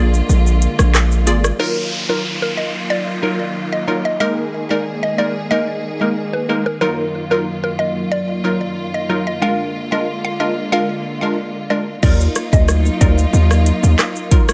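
A punchy, heavy 808-style bass with a sine body and a noise layer sits up front, hitting hard in the opening moments and returning at 12.0 seconds in this bouncy, tough dancehall excerpt in Eb harmonic minor at 92 BPM in a straight 4/4. Alongside it, an electronic afro-pop drum kit with a deep kick, metallic hi-hats, handclaps, rim clicks, shaker and crash cymbal drives the outer sections, though its kick drops out shortly after the start. A crisp, detuned wavetable chord stab with a bright filter pluck, phaser and sidechain pumping carries the accompaniment throughout, over a lush, bowed studio string section holding smooth sustained chords with vibrato that also pump with the sidechain. From 1.6 seconds, the drums and bass give way to a woody, round, mallet-like FM synth pluck carrying the melody through chorus, phaser and digital delay, while an electronic downlifter sweeps beneath it early on. 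The harmony moves through Bb7, Ebmadd9, Absus2, Ebmadd9/Gb and Bb7 before resolving back to Ebmadd9, all set in light reverb.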